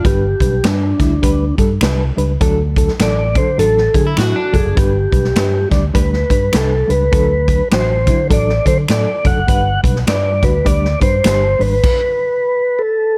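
A swung 4/4 groove drives this joyful, danceable slice of uptempo 1960s-style soul, anchored by a punchy, up-front big-band drum kit of kick, medium-tuned snare, hi-hat and crash, with very quiet, dry finger snaps joining at 0.6 s. Out front, a soft, flute-like tonewheel organ carries the melody through a slow rotary speaker over a reedy electric piano with fast tremolo and a round, amped fingered bass, all moving between G and D chords. A slightly broken-up, picked electric guitar slips in a brief riff at the very start and again at 4.1 s, and light reverb lends a small-room ambience before the organ rings on alone to 13.2 s.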